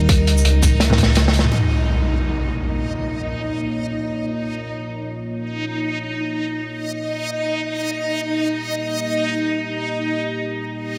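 A half-time drum and bass drop in free time opens this heavy, tense passage in Bb dorian, with a crunchy, saturated breakbeat kit of hi-hat, shaker, snare and toms that builds into a fill alongside a hard-clipped electronic kick and a rumbling, detuned sawtooth bass. At 1.5 s the breakbeat and bass stop as an up-front electronic impact hits and the harmony moves from Eb to Bb minor, leaving a deep, moody pad with sub octave, ring modulation, chorus, 12-bit sampler grit and sidechain pumping beneath a bright, reversed granular texture. A huge ambient reverb and a dense, heavily limited master give the sound its weight.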